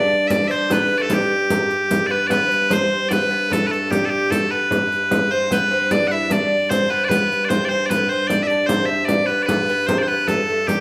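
A straight triple-metre lilt drives this festive, ancient-sounding medieval dance, cut from a longer piece. Piercing, bright bagpipes carry the melody up front from the start, while a breathy, hollow alto recorder with vibrato and chiff, a delicate fingerpicked lute with double nylon strings, and a reedy, nasal hand-pumped harmonium drone sit in the background. A small vintage frame drum and a riq with dark jingles, both struck with hard hands, join at 0.3 s, and a brief opening phrase gives way to a new section at 2.3 s, all heard as a band playing live in one room with a generous studio reverb.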